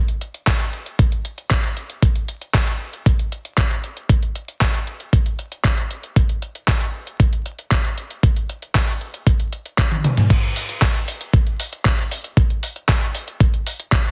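A gritty, thumpy, up-front sampled kick drives this bittersweet, melodramatic italo disco excerpt at 116 BPM in a straight 4/4. It sits alongside a tape-tinged 80s digital drum machine whose crash, handclaps, hi-hat and toms carry gated reverb and the sound of a small room, all within a dry, heavily compressed radio-like mix dusted with vinyl crackle, where a drum fill at 9.9 seconds ushers in a new section at 10.3 seconds.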